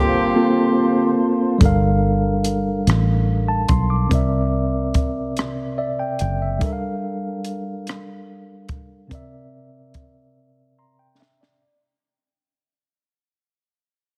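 Late-night and yearning, this slow six-eight R&B cut in G dorian moves at 48 BPM over Gm9 and C9 chords, built around a mellow, clean tine electric piano heard through its built-in speakers that adds fills along the way. Pure flute ensemble chords with vibrato and tight, octave-doubled horn stabs colour the opening. A compact, dark cocktail drum kit with a high-tuned snare and punchy kick enters at 1.6 seconds as the music begins to fade out, while a round, foam-muted fingered bass holds the low end until 6.6 seconds and the drums close with a fill, all under light reverb and a heavily compressed radio sound.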